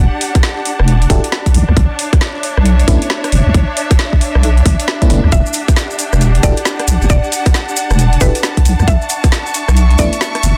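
Late-night and soulful, this short cut from a longer UK garage track rides a swung two-step groove at 135 BPM in E minor, drifting between Em11 and Bm11 chords. A deep, dark wobble bass with a chorused, saturated edge sits up front from the start, while a rich bowed string section with expressive vibrato breathes underneath, pumped by sidechain compression. The garage kit brings metallic hats, a woody snare and rim clicks roughened by overdrive, anchored by a tight, tape-tinged electronic kick. Glassy, bell-like FM electric piano stabs with chorus and delay arrive at 1.1 seconds. At 5.3 seconds a round, woody mallet-like pluck takes up a bright melody in the background, joined by grainy, close maracas. The mix is dry and dense, with a heavily limited modern master.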